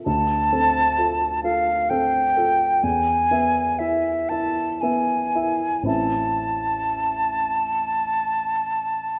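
Romantic classical duo for flute and grand piano, yearning and elegiac, unfolding in a flexible rubato 12/8 over a brief excerpt cut from a longer piece. The silver flute carries the melody from 0.1 s with an airy, mellow metal tone, vibrato and tongued notes, sitting up front and a touch louder than the accompaniment. The dark, smooth, vintage-sounding grand piano supports it with short-sustained chords moving through Dm7, E and Am, and both instruments sit in a moderate stage reverb with a softened top end.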